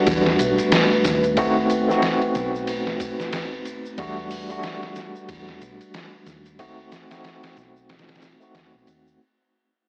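Trip hop at 92 BPM in 4/4 with a swung sixteenth feel, brooding and smoky, this short cut from a longer piece circles between Em11 and B7b9 over about nine seconds. A mellow tine electric piano sits up front, worn and slightly out of tune, its accompaniment colored by tremolo, a low-pass filter and tape echo, with a filter sweep running across the whole passage. Beneath it, a dark analog pad holds sustained chords with a slow attack and long release, its detuned, wave-folded tone thickened by chorus and a sub octave. A deep dub fingered electric bass, round and punchy with tube saturation, also carries a filter sweep throughout. The sampler-style drum kit is compressed, pitched down and gritty, with a thumpy kick, medium-tuned snare, hi-hat and ride, while an egg shaker and triangle add faint acoustic color in the background. The whole recording has a dry, gritty hardware character with an AM radio sound, light reverb and digital ambience, and it fades out from the very start.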